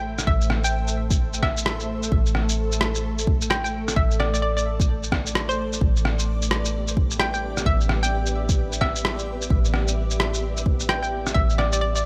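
A blurred, detuned granular cloud pad and a soft, round 808-style bass open this rainy, melancholic future garage excerpt in A minor at 130 BPM, both pumping to the sidechain. A deep, tape-warm electronic kick and a muffled, pitched-down rim click and shaker ride a 16th-note swing, while a hollow, bouncy square pluck carries the melody through chorus and digital delay, its sound shaped by ring modulation and a filter sweep. Once the chords have moved from Am to Em7/A, a faint, flickering grainy texture drifts in the background from 6.5 seconds, all in a lightly reverberant space.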